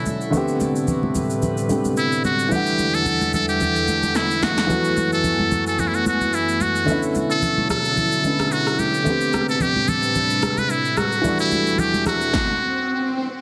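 Amapiano with a late-night, deep mood, where a buzzy trumpet with a metal mute carries a jazz-style solo up front through digital delay over a worn, intimate grand piano, a breathy pad pumping under chorus, an overdriven deep house drum kit with a drum fill at 4.2 seconds and soft-handed congas in the background, before the band stops at 12.3 seconds and an electronic swell closes the excerpt at 12.5 seconds.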